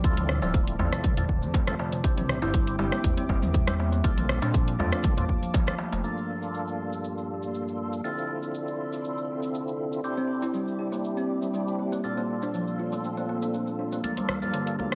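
Driving and hypnotic, this afro house excerpt in G dorian moves at 120 BPM in 4/4 with a light swing on the sixteenths, cycling through Dm7, Cadd9, Bbmaj7 and Gm7. A dark, detuned analog pad sustains chords in the background with chorus and sidechain pumping, while a woody, ringing kalimba plays filtered, delayed arpeggios and a fat, lightly overdriven tonewheel organ adds percussive stabs with key click, chorus vibrato and a slow rotary speaker. Underneath, a smooth sawtooth synth bass with a moving notch pumps against a punchy, up-front electronic kick, with the house kit's cabasa, hi-hat, rim click and toms running throughout. Very quiet, close and dry congas and a deep clay-shelled darbuka set further back fill out the opening groove. The kick, bass, kalimba and hand drums drop away around 6.0 seconds, leaving pad, organ and kit until the kalimba returns at 10.2 seconds, and a drum fill at 14.0 seconds brings the bass and congas back in under a light reverb.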